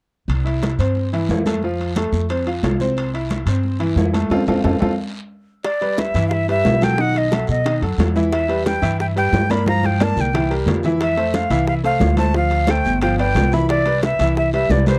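This dry, close recording has a 1970s studio sound, with the woody, thumpy pizzicato upright bass, a brilliant upright piano and the flute all up front. The joyful, festive salsa runs at 179 BPM in 4/4 in C major, cut from a longer piece, with bass, ringing congas, raspy guiro and metal-shelled timbales starting at 0.3 seconds and the piano joining a moment later. The timbales sit at a distance in a large room, the guiro stays in the background, and the band hits an accent from 4.3 seconds, capped by a drum fill. At 5.6 seconds a breathy, reedy jazz flute with vibrato and a crisp, chiffy attack takes the melody, while tight, high-tuned bongos played with hard hands add their snap in the background. The harmony moves from C and F through Gmaj13, B7 and Em, then Gm7, C7, Fmaj7, Dm7 and G7 before settling on Cmaj9, with another drum fill around 9.7 seconds.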